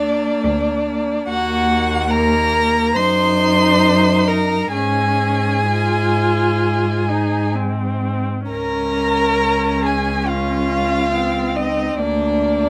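A bowed first violin sings the melody up front, its warm tone shaped by vibrato and expressive portamento slides. This is a slow, romantic classical movement for string quartet in Db major, tuned to A4 = 438 Hz, moving in a rubato 4/4 at roughly 63-74 BPM with a lyrical, tender mood. Beneath it, a second violin carries a focused inner line with a rich vibrato. The viola fills in the accompaniment with its own expressive portamento. The cello anchors the bass up front, its soft attack and gliding, vibrato-laden tone giving the low end a velvety depth. Light reverb surrounds the four players as the harmony passes from Bb/D through Ebm and Db/Ab to Ab and Db, returning to Bb/D at 12.0 seconds in this passage cut from a longer piece.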